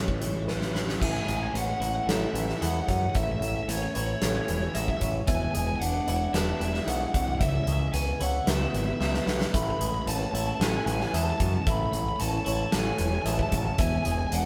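In a straight 4/4, this hopeful, cinematic post-rock fragment is driven by a huge, punchy arena drum kit with bright cymbals, which sits up front and throws in fills at 0.5 and 9.0 seconds alongside a growling, overdriven picked bass. An overdriven semi-hollow guitar carries the melody up high, while a clean twelve-string electric guitar ripples through arpeggios in a spring reverb and a felt-muted upright piano adds soft, intimate arpeggios from the background. A very quiet, ethereal pad holds airy, detuned chords through changes from Amaj7 to E7 and C#m7, all played live in a moderate stone room.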